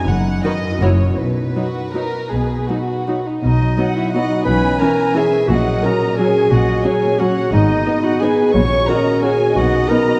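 A lilting waltz in three, played with elastic rubato, this orchestral ballroom excerpt feels sweeping and festive. The violin section carries the melody with a soft-edged, veiled sul tasto tone and light vibrato, while a second violin line adds a shaded inner voice and the violas, set further back, fill in the accompaniment. Beneath them, dark cellos and a pure, floating double bass section hold the bass, and a ringing, thumb-plucked concert harp spins arpeggios throughout. At 3.4 seconds the music moves into a new section: a smooth-topped clarinet steps up front with its own second line, and a mellow French horn section settles in behind with sustained chords. The violins, violas and cellos sound intimate and close within a reverberant concert hall, giving the whole production a rich, dusky glow.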